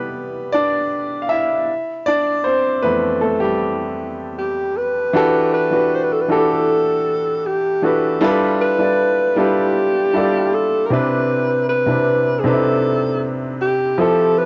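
A warm, up-front baby grand piano opens this sensual, late-night R&B excerpt at a straight 78 BPM in 4/4, tuned to A4 = 439 Hz, laying down Cmaj9 and Fmaj9 chords before moving through Em11 and G13 and back to Cmaj9. At 4.4 s a mellow alto saxophone enters up front with the solo melody, played in a jazz style with vibrato, subtone and scooped notes and a smooth top. Both instruments carry a cassette-tape character and plate reverb, set in a moderate booth ambience on a home cassette recording whose highs stop at 7.5 kHz.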